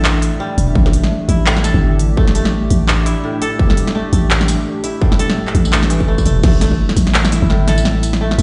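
Half-time drum and bass at 169 BPM in 4/4, with a swung sixteenth-note feel, this tense, heavy passage is cut from a longer piece and sits in a drop from the start. A growling, buzzy 808-style bass sits up front, low and decaying after a fast attack, while a distorted electronic kick drum punches through from 0.8 to 6.8 seconds. The drum kit is layered and produced, with a cracking snare, crisp hats, handclaps, tambourine and crash cymbal, all close and present. Beneath them, a dark analog pad holds moody, detuned chords with a slow attack and long release, colored by chorus, phaser and sidechain pumping. A dry, woody koto, played with fingerpicks, spins arpeggios through a digital delay, and the whole mix carries the boom of a big sound system in a bare stone room, with its top end rolled off.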